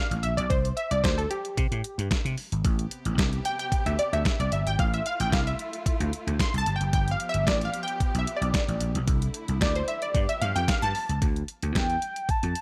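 A punchy, detuned polysynth comp with chorus opens this late-night, funky slice of early-eighties boogie funk, carrying a solo over chords such as Am9, Fmaj7/A and G7 as a growly, amped slap bass and a thumpy, tape-tinged 8-bit drum machine with kick, snare and hi-hat sit up front. A lush, bowed string section enters quietly at 2.6 seconds with sustained chords until 11.2 seconds, all under light reverb. Shortly after the excerpt moves to a Dmadd9 chord, a round, horn-like synth lead with chorus and vibrato takes the melody briefly at 11.8 seconds.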